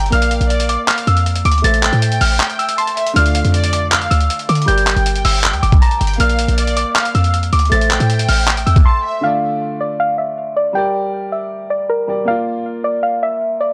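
Brooding and hard-hitting, this cut from a longer trap track moves at 158 BPM in a half-time feel in D minor, cycling through Bb, Am, Dm and Gm. A soft, round pluck carries the melody with a dark, detuned edge, chorus and a filter sweep, while a lush bowed violin section adds a smooth second line with vibrato and analog delay until 9.2 seconds. A clear concert grand piano with deep bass supports the harmony throughout under a low-pass filter. A punchy, tight 808-style bass and a dusty, gritty sampler-style kit of thumpy kick, hi-hat and handclaps sit up front, stopping at 8.8 seconds and leaving the pluck and piano to close the passage. The sound is dry and gritty, with a hardware and cassette tape character and little reverb.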